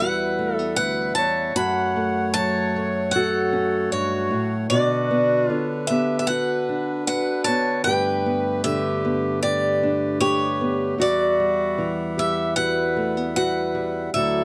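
Peaceful and warm, this acoustic folk excerpt at 76 BPM in 4/4 has a picked swing-style acoustic guitar carrying the melody with a bright, woody, boxy tone from old strings, a clear classical-style clarinet playing a second line, a small fingerpicked nylon-string guitar up front in the accompaniment, and a reedy, breathing hand-pumped harmonium holding dark, nasal sustained chords, all captured by close, detailed microphones in light reverb as the harmony moves from Emadd9 through F#m, Bm and Gadd9 before returning to Emadd9.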